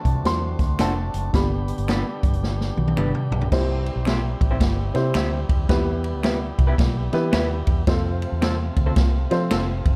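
A swinging 4/4 groove at 110 BPM drives this short, danceable cut of uptempo 1960s-style soul in C major, with an up-front big-band drum kit, boomy kick and medium-tuned snare, underpinning a round, punchy, foam-muted electric bass and a finger snap tucked in the background from 0.8 seconds. A woody, intimate upright piano with audible action noise opens with a solo through 3.5 seconds, where a drum fill from 2.4 seconds leads into the next section, while a lightly overdriven tonewheel organ with key click and vibrato holds sustained chords beneath. A slightly broken-up, lo-fi electric guitar adds stabs over chords moving from D7 and G to C, Em and F, all within a dark production and light reverb.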